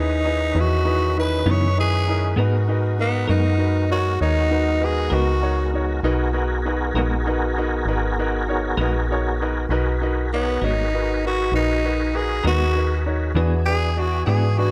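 Slow blues in 12/8 at 66 BPM in G# minor, smoky and mournful, where a raspy, growling tenor saxophone with scooped notes and tape echo solos up front over bright, woody upright piano, a lightly overdriven tonewheel organ through a slow rotary speaker, a metallic FM bass with a fast attack and decaying notes, and a clean semi-hollow guitar with tremolo entering at 1.5 seconds, moving from C#m9 to G#m9 and reaching E7 at 13.4 seconds in a small, lightly reverberant room.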